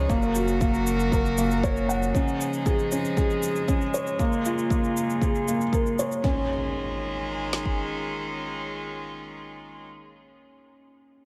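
Hopeful and luminous, this excerpt of piano and strings electronica moves at 117 BPM in a straight 4/4, centred on D-flat major and tuned slightly below concert pitch. A felt-muted upright piano sits up front with a soft, dark, intimate tone, its action noise audible as it plays a riff through a delay until 11.2 seconds. A string quartet, one player per line with a reedy gut-string, period-style character, holds sustained bowed chords through a low-pass filter, sounding both close and distant until 9.9 seconds. A round sine sub bass pumps under sidechain for only the first 2.1 seconds, while a deep house kit with a deep kick and woody snare runs to 7.8 seconds alongside a tape-tinged shaker that drops out at 6.2 seconds. A downlifter and impact sit in the background, and the harmony moves from Gb to Dbadd9 and Bbm7 before returning to Dbadd9, all set in a light digital ambience.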